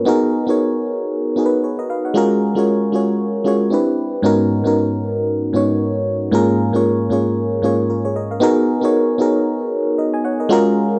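A cassette-taped home recording gives this short amapiano fragment a lived-in sheen, set in a moderate studio reverb. A lone FM electric piano carries the whole piece, sitting up front with a glassy, bell-like attack and a full-bodied, decaying tone, touched by a noise layer and a chorus shimmer. The mood is hypnotic and late-night, with a gently swung sixteenth-note feel in 4/4. The harmony drifts from G#m7 through G#13sus4, Cmaj7, Bmaj7/G# and A#m7/G#, spread across a range from G#2 to G#5. At 8.4 seconds a drop arrives and the chords return to G#m7, carrying the music to its end at 11.0 seconds as it is cut from a longer piece.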